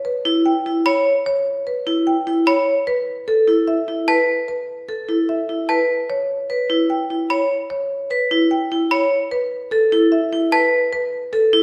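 This is minimalist classical pattern music, propulsive and hypnotic, cut from a longer piece and moving at a straight 149 BPM in 4/4 in G lydian. The marimba opens at 0.0 seconds with the melody, its rosewood bars sounding woody and full under medium mallets, close-miked and dry. The vibraphone joins at 0.3 seconds with arpeggios, sitting up front as the loudest voice, metallic and ringing under hard mallets with a medium motor vibrato and a boxy small-room colour. A trough xylophone enters at 0.9 seconds with its own high, sharp and bright arpeggios, percussive and mid-forward under plastic mallets, before dropping out at 10.8 seconds. The harmony alternates between a rootless G6 and Asus2, and a recital hall reverb lends the ensemble a lingering wet glow.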